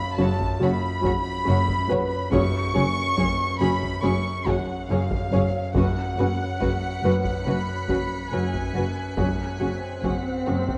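Cinematic suspense film score at 70 BPM, mysterious and eerie, built on a Bsus2/F# chord. A chamber violin section carries a vibrato melody played sul tasto over a ringing, fingerpicked harp riff and an intimate grand piano texture with audible action noise. Symphonic violins add a floating second line, dark woody violas accompany, a very quiet cello section and distant double basses hold the bass, and a hard-stick taiko ensemble drums in a live room. High pure violins enter as a faint texture at 5.7 s, an up-front electronic swell arrives at 9.7 s, and the whole passage, cut from a longer piece, sits in moderate scoring-stage reverb with the warbly pitch drift of worn cassette tape.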